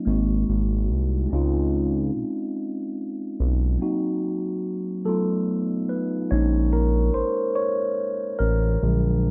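Yearning and sultry, this slow six-eight R&B excerpt in Bb minor moves at 48 BPM, with a mellow, clean tine electric piano colored by phaser carrying the chords from Ab9 through Dbmaj7, Cm7b5 and B7#11 to Bbm7 over a smooth, detuned sawtooth-and-square synth bass with vibrato, both parts sitting up front in light reverb, and the electric piano takes a solo at 6.3 seconds.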